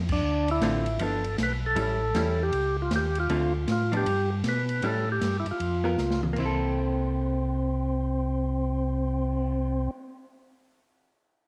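Swung eighth notes in 4/4 drive this brisk, bluesy soul jazz organ trio excerpt, which opens on a band accent at 0.0 seconds. A round, dark tonewheel organ with chorus vibrato and slow rotary speaker carries the bass line, while a second, percussive tonewheel organ with key click and slow rotary plays the melody up front, and a clean, picked hollow-body jazz guitar with a compressed tone comps beneath them from 0.6 seconds. An acoustic drum kit with a boomy kick and rolled-off top swings along in a small room, adding a fill at 6.0 seconds that leads into a new section as the chords move through the changes under moderate echo chamber reverb.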